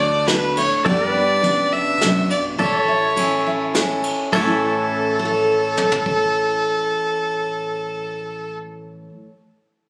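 A clear, biting fiddle carries the melody up front over a full-bodied picked dreadnought acoustic guitar, twangy pedal steel chords with volume swells and a woody, thumpy upright bass in the background, with a soft brush kit and dark cymbals joining at 0.3 s, in this nostalgic, easygoing honky-tonk and classic country piece at 104 BPM in 3/4, captured on a phone in the room with light club reverb and compression and cut from a longer performance.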